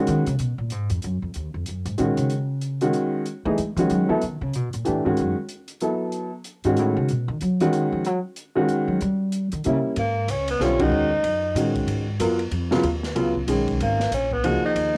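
Spiritual and intense, this modal jazz excerpt swings at 188 BPM in 3/4, tuned to A4 = 435 Hz and recorded at home on cassette, as a woody pizzicato upright bass solos through the first 10 seconds in F# dorian over a boxy upright piano colored by tape and plate reverb and a small-room drum kit with dark cymbals and a boomy kick, before the key moves to G# dorian at 10.0 s and a distant, vibrato-laden tenor saxophone, also tinged by tape, enters with the melody ahead of a band accent at 10.8 s.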